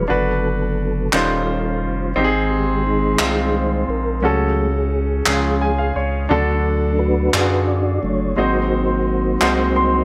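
A mellow tonewheel organ carries a slow, solemn gospel solo over sustained chords, its slow rotary speaker and chorus vibrato giving it a soft, flute-like shimmer, while a baby grand piano accompanies up front and a saturated sub bass adds a deep, thick foundation. Hollow group handclaps enter at 1.1 s, lending a human, fervent pulse to the 6/8 feel, and the piano steps out with short fills at 5.3 s and 9.4 s. A moderate large studio reverb, blended with a small room, surrounds this fragment of a longer piece.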